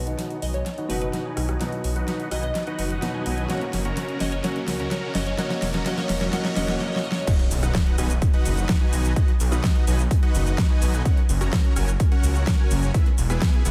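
A straight 4/4 pulse drives this triumphant, anthemic festival progressive house excerpt, where a big-room dance drum kit with a huge snare and metallic hats builds through a long fill while a dense, compressed supersaw riff plays under a filter sweep, a thick, chorused detuned saw bass pumps beneath, and a smooth vintage grand piano and a glassy wavetable pluck melody sit in the background until about 7.3 seconds. A very quiet riser and impact arrive from 3.7 seconds, and at 7.3 seconds the drop hits with a punchy, up-front electronic kick joining the supersaw, bass and kit. Everything is bathed in a dreamy cathedral reverb, with sidechain pumping and tape echo giving the synths a swaying, hazy glow.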